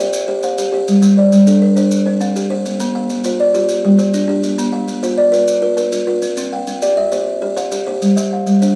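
Hypnotic and rippling, this southern African traditional piece in a straight 12/8 turns an mbira-style interlocking cycle through a short cut from a longer performance. A buzzing kalimba, woody and hollow-boxed with a thumbnail pluck, rings up front in arpeggios, while a second kalimba on a solid board adds soft, short, mellow fingertip-plucked arpeggios just behind it. Grainy, distant maracas sit far back in a large room, and the home cassette recording carries little reverb.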